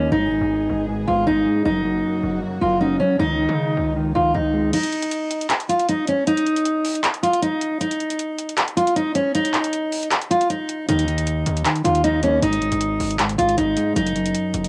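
A fingerpicked, full-bodied jumbo acoustic guitar carries the eerie, menacing melody of this half-time trap fragment on cassette, at first over a dark, clean electric guitar, lush bowed strings in the background and a saturated, aggressive 808-style bass; at 4.7 seconds the strings drop away and the bass and electric guitar fall silent as a booming, tape-warm analog drum machine with metallic hi-hats, handclaps and crash cymbal comes up front, and at 10.9 seconds its kick arrives as the electric guitar and heavy bass return, all in a small, homespun room.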